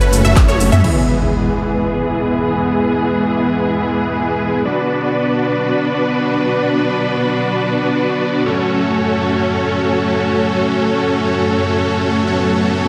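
Festival progressive house in free time, emotional and euphoric, where a huge, thick supersaw riff rides over a bright, bowed string section's sustained chords through F#m, E, Bm and back to F#m, both with sidechain pumping, and a filter sweep on the supersaw from 0.8 s. Both parts sound from the start, joined during a brief opening by lush unison pluck arpeggios, detuned saw bass with chorus, a punchy electronic kick, and a crisp, overdriven big-room drum kit with a fill at 0.4 s. These opening parts give way to an electronic impact at 0.8 s, all in a dreamy mix soaked in hall reverb.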